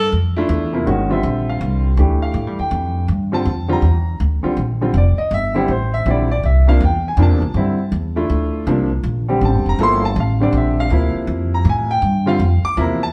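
Hypnotic and cool, this modal jazz cut in G dorian swings in 3/4 at 161 BPM, with chords moving from C6 to Gm9 and C6/G over a roughly thirteen-second stretch taken from a longer piece. A woody, thumpy pizzicato upright bass sits up front from the start, and a natural-toned grand piano joins at 0.4 seconds to supply accompaniment. The band plays live in one large studio room with moderate reverb, and lossy compression artefacts colour the sound.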